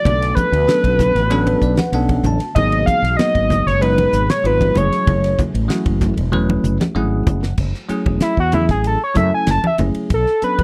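An overdriven synth lead screams out front with gritty, guitar-like distortion and slapback echo over a funky, slick jazz fusion groove of bell-like tine electric piano with phaser, a fat-snared damped 70s drum kit, a fretless electric bass, background congas and a dark string machine cello pad that drops out at 7.6 seconds as the synth takes a solo.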